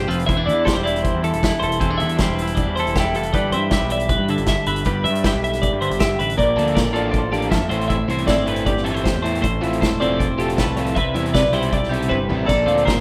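A straight 4/4 pulse at 157 BPM drives this wistful yet bright math rock and midwest emo fragment in C major, with a loose, roomy indie drum kit (dark cymbals, punchy kick) under a twangy, compressed twelve-string electric guitar accompaniment and a second bright twelve-string carrying arpeggios through subtle chorus. A fuzzy, overdriven picked bass holds the low end while the chords move from C69/E and G69 into a Bbmaj9, Am7, Fmaj7 and Cmaj7 passage at 6.4 seconds. There, a crunchy, double-tracked overdriven guitar riff enters at 6.6 seconds, and a drum fill at 12.1 seconds closes this rough home-demo mix with its moderate room reverb.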